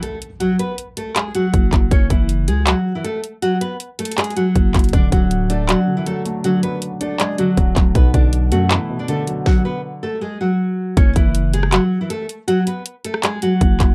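Hard-hitting and melancholic, this half-time trap hip hop excerpt sets a bright, fingerpicked classical nylon-string guitar melody with slapback echo over an up-front electronic kit of hard-clipped kick, sharp snare, metallic hi-hats, handclaps and rim clicks. A growling, buzzy 808-style bass with a fast attack arrives at 1.5 seconds, and a dark, mellow vintage grand piano with short sustain adds quiet accompaniment from 4.9 to 10.2 seconds, while a stop from 9.5 to 11.0 seconds leads into a closing section. The production is dry and dark, keeping guitar, drums and bass close and up front.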